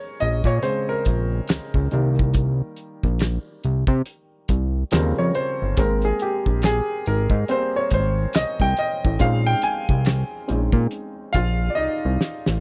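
Small-room ambience frames this late-night, soulful neo-soul R&B excerpt at 70 BPM in Bb dorian with a swung 16th-note feel, where an up-front concert grand piano with deep bass and short sustain takes a solo over Bbm7, Cm7, Eb13, Abmaj9 and Bbm11, a fat, saturated analog bass with a filter pluck sits beneath, and a cloth-damped, thuddy acoustic kit of tight kick, fat snare, hi-hat and handclaps pumps with a rolled-off top before a drum fill at 11.8 seconds.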